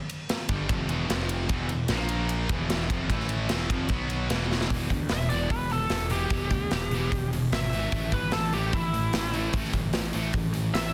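Hard rock at 149 BPM in 4/4, this heavy, driving excerpt is cut from a longer piece and opens on an E minor chord. A big rock drum kit sits up front with a punchy kick, medium-tuned snare, hi-hat, ride and bright cymbals in a big room, while a fuzzy, overdriven picked bass pushes low and forward beside it. Behind them, a high-gain distorted guitar and a very quiet overdriven guitar play the riff, joined from 1.5 to 4.7 seconds by a double-tracked cranked stack guitar as the chords shift through F5, A#5, A5 and B5 around E5. A drum fill at 4.5 seconds leads into a second section where a biting lead guitar, overdriven and given a digital delay, takes a solo in its upper register from 5.1 seconds to the end. The recording carries light reverb and a dense, heavily limited modern master.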